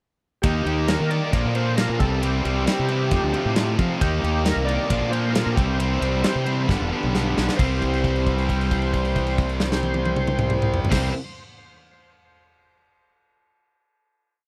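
From 0.4 seconds a full band launches this short, sunny and confident classic rock piece at 134 BPM in C mixolydian, with a gritty, key-clicking tonewheel organ playing hook phrases through chorus vibrato and a slow rotary speaker over crunchy eighth-note open chords and tight distorted power chords from two bright guitars, a fuzzy, up-front fingered bass riff with syncopation, and a big-room drum kit with a punchy kick whose fill at 6.7 seconds leads into a final C chord held to 10.9 seconds, heard in a dry, close 1970s-style studio sound with light reverb.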